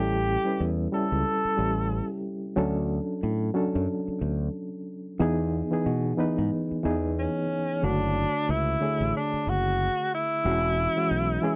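A tenor saxophone sits up front with a vintage, jazz-style solo voice, its breathy subtone and vibrato carrying the melody in a short opening phrase before returning at 7.2 seconds. This is a smooth, lush 1970s-style soul excerpt at 91 BPM in 4/4, with a light swing on the sixteenth notes. A reedy, slightly worn electric piano heard through its built-in speakers supplies clean accompaniment throughout, shimmering with a fast tremolo and adding a brief fill at 11.1 seconds. Underneath, a fingered electric bass gives a bright, growly, amped tone to the low end. The harmony moves through A7, Dmaj7, Emaj7, Dmaj7/F# and E69, giving the passage a mellow, open glow. The sound is dry and close, like a small 1970s studio with little reverb, so every part feels near and direct.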